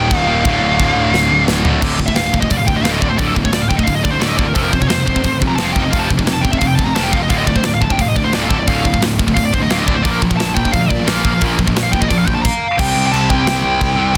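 A distorted lead guitar with tape echo carries this dark, aggressive heavy metal passage, its warm-toned solo running from 1.8 to 12.8 seconds. Beneath it, a bright high-gain rhythm guitar and a second, very quiet rhythm guitar play the riffs, while a growly fuzz bass sits in the background. A polished, up-front drum kit with a tight kick, bright cymbals and a china drives the half-time opening and closing bars, with a fill just before the solo, all in a small room and a dense, heavily limited master, cut from a longer piece.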